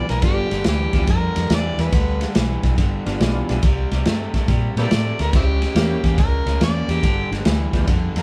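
An overdriven, amplified harmonica opens this gritty, rollicking electric blues shuffle, arriving together with a thick tonewheel organ and a bright, crunchy electric guitar riff. The harmonica plays a jazz-style solo with vibrato, tongue slaps and scooped notes. It breaks off at 2.2 seconds and returns at 4.8 seconds. In the background, the lightly driven organ turns through a slow rotary speaker with chorus vibrato and audible key click, holding the accompaniment until 7.9 seconds. Underneath, a dark, round, foam-muted electric bass and an up-front, saturated acoustic drum kit with punchy kick, medium-tuned snare, dusky ride cymbal and a rolled-off top carry the swung groove over G7, C7 and C#dim7 before settling back on G7. The band sounds as if it is playing live together in one room, with moderate studio ambience, and the clip is cut from a longer piece.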